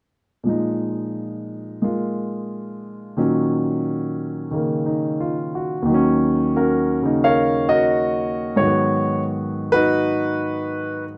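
Smoky and cool, this brief solo jazz excerpt in Eb minor sets a lone concert grand piano up front from 0.4 to 11.2 seconds, its natural tone rich with deep bass as it moves at 89 BPM in 4/4 with a loose rubato swing, drifting through Bb7sus4, Ebm7/Bb and Abm7 in light reverb, cut from a longer piece.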